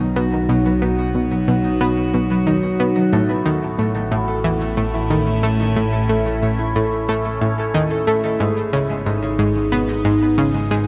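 Ambient, sequencer-driven space music with a cosmic, luminous mood, this excerpt from a longer piece floats over chords moving from B to A at 3.1 seconds and G#m at 8.4 seconds. An evolving, morphing wavetable pad holds sustained chords through a phaser and its own reverb, while a mellow, ringing concert harp plays arpeggios through tape echo and a round, sawtooth analog pluck plays a riff with chorus and tape echo. Beneath them a fat, nasal, detuned analog bass holds the low end, and a lush hall reverb bathes the whole mix.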